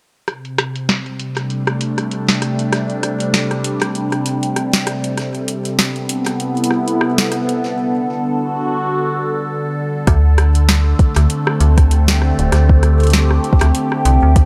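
Eerie and intricate, this IDM excerpt moves in a swung 4/4, cut from a longer piece. A swirling, detuned sawtooth pad sits up front from the start, its slow-attack sustained chords thickened by phaser and chorus as the harmony moves from D7sus4 through Am9 and Gmaj9. Alongside it, a booming analog drum machine ticks out metallic hi-hats, rim clicks and a crisp snare, tape-warm and coloured by low-pass filtering and digital delay, with a filter sweep shaping the drums through the opening section. At 10.1 seconds the chord returns to D7sus4 and the second section arrives with a soft electronic kick and a metallic FM bass whose fast, decaying notes push forward, the pair sounding louder than the pad and drum machine. A light reverb gives the whole a subtle sense of space.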